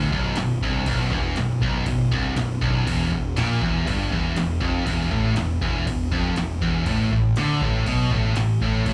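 Heavy metal at 120 BPM in a straight 4/4, this heavy, aggressive fragment of a longer piece pairs a bright, scooped high-gain guitar up front with a dark, sludgy overdriven guitar carrying slapback echo in the background, both riffing from the start over a fuzz-laden picked electric bass and an analog drum machine with a deep kick, punchy snare and crash cymbal that joins at 0.1 seconds, all heard as a live club gig through the venue's PA, while the harmony moves from a chordless opening riff to Gm13/E at 2.9 seconds and A5 at 6.9 seconds.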